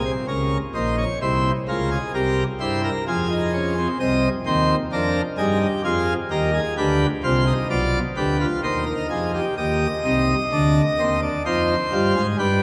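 Awash in a vast, echoing cathedral reverb, a pipe organ on full plenum sounds up front and brilliant, its mixtures and baroque voicing carrying a crisp chiff across a range from Bb1 to Eb5. This is a contemplative yet driving baroque-style three-part fugue for solo organ in 3/4 at 65 BPM, moving through minor-leaning harmonies before settling into C minor at 9.6 seconds. Cut from a longer piece, the passage ends on an F minor chord as the organ stops at 12.6 seconds.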